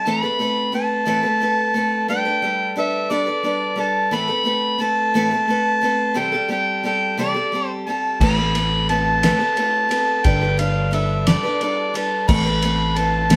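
Folk rock with a heartland rock lilt in a slow, dusty, wistful 6/8, where a mellow harmonica sings a vintage-toned melody with scooped notes over a bright, boxy parlour-style picked acoustic guitar, before a round, direct electric bass and a cloth-damped, thuddy drum kit with dark cymbals and a fat snare join at 8.2 seconds, all captured as a band playing live in one room with moderate studio reverb in this excerpt cut from a longer piece.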